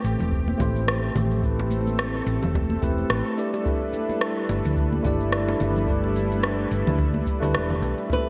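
Bright digital production in a 1980s style sets this short sunset chillout passage in a lush hall reverb, giving it a smooth, wistful glow. A clean tine electric piano, heard as if through its built-in speakers, carries the accompaniment with a filter sweep, a low-pass filter and a digital delay, while a thick, detuned unison pad holds sustained chords with a slow attack, long release and chorus. Underneath, a dark, round hollow-body short-scale electric bass sits up front, joined by a deep electronic kick drum and an electronic shaker, congas and rim click treated with gated reverb. Very quiet, close and dry congas and bongos add hard-handed acoustic color to the swung sixteenth-note feel as the harmony moves from Am9 to G6. At 8.1 s a dark, fingerpicked flamenco guitar steps forward on a single note, finger squeak and all, just as the passage is cut off.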